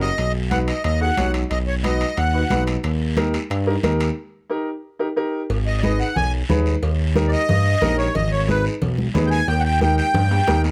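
A reedy, sweet accordion with light tremolo tuning stands out in this passionate, driving cumbia excerpt at 181 BPM, playing melody from 0.0 to 2.6 seconds and returning for a solo at 5.7 seconds in G# harmonic minor, over a clear, woody upright piano, a smooth, nasal synth bass up front, raspy guiro, thick-skinned congas, and ringing timbales and cowbell, with drum fills, a break at 4.2 seconds and light reverb on close, detailed microphones.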